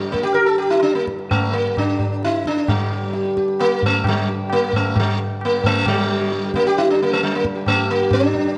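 A moderate, stage-like reverb gives this short cut from a longer Hindustani classical performance a sense of space around its meditative, solemn mood. It is set in raga Shivaranjani on G, in 7/4 at 132 BPM with a straight feel, and gradually speeds up over its 8.6 seconds, moving into a new section at 5.9 seconds. Up front, a mellow, plectrum-plucked sitar carries the melody with a buzzing, shimmering tone and sympathetic strings, while a high-tuned, ringing, close tabla keeps time and a reedy, nasal hand-pumped harmonium breathes a low drone in the background.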